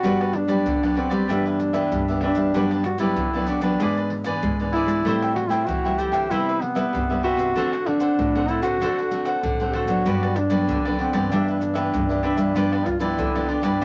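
A mellow, smooth-topped duduk sits up front and carries a bittersweet, yearning folk-style melody through this short samba and choro passage cut from a longer piece. Beneath it, a crisp picked cavaquinho and a woody, fingerpicked classical nylon-string guitar with old strings provide accompaniment, while a second warm, fingerpicked nylon-string guitar plays the bass line over a gently moving progression from Gmaj7 through Am7, Cmaj7 and D7 to G7. Maracas, a tight surdo, pandeiro and tamborim add close, acoustic percussion in a straight 4/4 feel, all set in a moderate small-room reverb.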